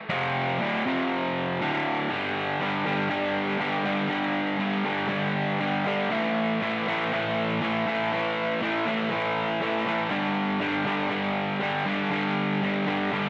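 Rock excerpt at 120 BPM in a straight 4/4, where a lone raw garage guitar, bright and overdriven, double-tracked and picked up front, swaggers through rowdy power chords from F5 and D5 into a longer stretch cycling G5, A5 and back to G5 from 2.1 seconds, all set in a moderate plate reverb.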